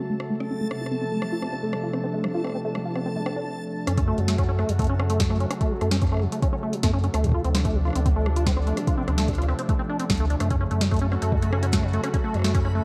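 A melancholic, intricate IDM piece at 147 BPM, cut from a longer work, opens on a smooth, detuned sawtooth pad with chorus and a rubbery, resonant acid bass arpeggio under a filter sweep with tape echo, beside a dreamy reversed texture and an analog drum machine with a crisp snare and metallic hats; after a brief break, a round sine sub bass enters at 3.9 s with an overdriven electronic kick just after, and the bright reversed texture returns at 11.2 s, set in a dark, warm production with echo-chamber reverb.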